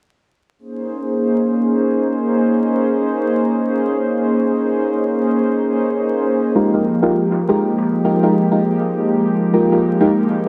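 A straight 4/4 pulse at 161 BPM frames this dark, nostalgic drum and bass excerpt in Bb minor, cut from a longer piece, with its harmony moving from Bbm11 to Fm11 at 6.6 s. A deep, mellow chord stab enters at that point and sounds until 10.1 s, its soft, detuned tone given a quick filter pluck, chorus, phaser and dub echo as it sits up front. A wet echo-chamber reverb, vinyl crackle and a dense, heavily limited modern master give the sound its hazy, compressed character.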